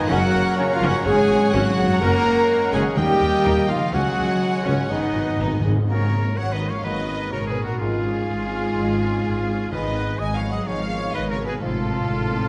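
A straight 4/4 pulse at 125 BPM drives this swashbuckling, adventurous cinematic passage, cut from a longer piece, with a rich violin section carrying the melody over a background violin line, bright oboe, airy flute ensemble and a faint, vintage-toned clarinet. Prominent French horns and faint trombones hold sustained chords, a mellow, close-miked trumpet adds stabs, a quiet viola section accompanies with expressive portamento, and a quiet harp rings out arpeggios. Intense cellos, a distant double bass section and a soft tuba form the bass, while round, dry timpani play a fill at 4.9 seconds, just before the clarinet and tuba drop away at 5.6 and 5.8 seconds, all set in a wet scoring-stage reverb.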